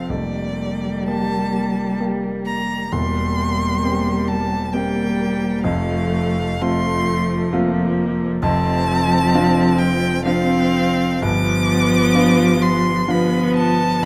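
From the first moment, a bowed violin sings a lyrical, focused melody with vibrato over a serene, slow romantic movement for piano quartet in F major, moving at 65 BPM in a rubato 3/4. Beneath it, a cello adds an expressive second line with soft attacks and portamento, while a dark, woody viola sounds distant in its accompaniment and an intimate concert grand sits up front, its deep bass and audible action noise giving it a natural presence. Close, detailed miking and light reverb frame this 14-second excerpt, as the harmony passes from Gm7/F through F to a closing G7.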